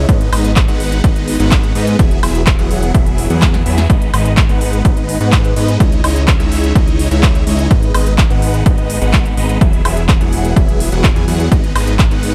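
Anthemic and emotional, this festival progressive house excerpt moves in a straight four with a dark production, built on huge, lush supersaw chords carrying the riff through phaser, dub echo and sidechain pumping, over a fat, saturated analog bass that also pumps with sidechain compression. A punchy, overdriven electronic kick sits up front, joined by a big-room dance kit of crisp hats, punchy snare, handclaps and woodblock re-recorded in a large room, with a drum fill at 3.4 seconds. The chords cycle between G#m, Eadd9 and C#madd9 throughout.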